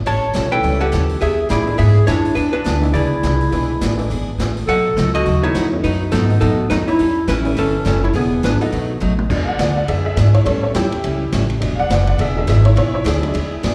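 A swinging 4/4 at 208 BPM drives this cheerful western swing excerpt in E mixolydian, with woody, growly upright bass up front, a dark-cymballed vintage drum kit, a bright picked steel-string acoustic guitar and a jangly, detuned honky-tonk upright piano, all but the bass carrying slapback echo. A dark, clean hollow-body archtop guitar takes the melody over a mellow, subtoned clarinet second line with light vibrato and scooped notes until both drop out at 9.0 seconds. After a drum fill, the piano solos from 9.3 seconds over dominant seventh chords, and the whole band sounds like a live gig heard through the venue's PA in a reverberant recital hall.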